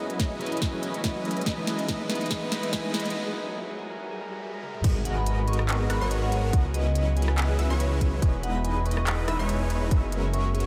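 Future bass with a dreamy, emotional half-time swing, this excerpt builds from a filtered, pumping supersaw riff, a fingerpicked Celtic harp and a slightly broken-up, twangy electric guitar drenched in lush chorus over crisp trap hats, sharp snare and a hard-clipped kick, while a very quiet ethereal pad holds chords beneath. A faint riser leads into the drop at 4.8 seconds, which lands with an impact as a thick, saturated detuned saw bass and a very quiet wave-folded pluck high above arrive, soon followed by a bright, ringing vibraphone melody with analog delay. The whole mix is soaked in huge ambient reverb.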